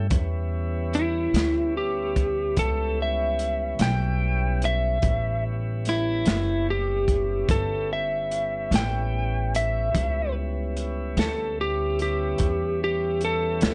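Rollicking yet soulful, this slow blues in 12/8 rides a straight feel over a single A9 chord, cut from a longer piece. A tonewheel organ holds smooth, clean sustained chords in its middle register from the start, colored by a slow rotary speaker and plate reverb, while a woody, pizzicato upright bass with steel strings sits up front in the low end. A crunchy breakbeat kit enters at 0.1 seconds with hi-hat, kick and snare; its tight kick and medium-tuned snare sound saturated and gritty with a rolled-off top. At 0.9 seconds a lightly driven electric guitar takes the melody in a solo, its picked, compressed tone dark and slightly broken-up, with plate reverb behind it. The overall production is warm and closed-off at the top with light reverb, and the guitar, drums and bass are pressed forward in the mix.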